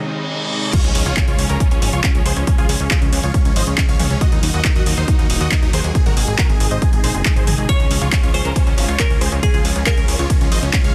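A straight 4/4 pulse drives this euphoric uplifting trance excerpt: a reverse cymbal and impact open a soaring drop at 0.7 s, led by a heavy, up-front electronic kick, an overdriven analog drum machine with crash, handclaps, hi-hat, ride and toms, and a funky plucky analog bass, while a huge, bright supersaw lead with phaser and dub echo rides over a lush, thick background pad carrying chorus and vintage sampler grit, both pumping to the sidechain, before a crystalline wavetable pluck joins at 7.7 s.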